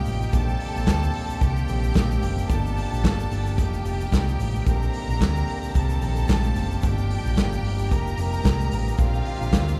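A round, amped picked electric bass sits up front in this driving, danceable disco excerpt, holding down the low end from start to finish. Beside it, an acoustic soul drum kit with a small-room sound pushes ahead on a tight kick, medium-tuned snare, hi-hat and handclaps, its sixteenths carrying a light swing. A lush, bowed studio string section with vibrato plays a clear, focused second line, while a pipe organ on a nasal cornet solo stop holds sustained chords in a baroque voicing with a touch of chiff. Further back, high-tuned congas with a thin, bright skin and a grainy, saturated tube shaker add very quiet percussion. The harmony cycles through Bb69, Cm7, Gm7 and F9sus4 twice, arriving back on Bb69 at 9.0 seconds, and the band, playing live in one room, is bathed in a long, wet cathedral reverb.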